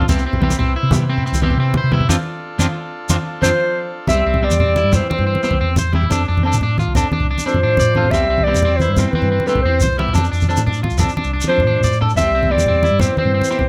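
Lightly reverberant, this danceable highlife guitar band groove moves in a lilting 12/8 at 119 BPM in C major, swaying between Cmaj7 and F6. A twangy, slightly broken-up electric guitar with spring reverb plays accompaniment, while a second, compressed guitar in the background picks arpeggios through a slapback echo. A dark, hollow-body bass, low-tuned thick-skinned congas and a grainy shekere carry the pulse, and a buzzy vintage combo organ holds chords until 4.1 seconds. A band accent sets up the entry of a smooth, up-front clarinet melody with vibrato and scooped notes at 3.4 seconds, shadowed by a warm jazz-style trombone line in the background, and a short drum fill near the end leads back into the cycle of this excerpt.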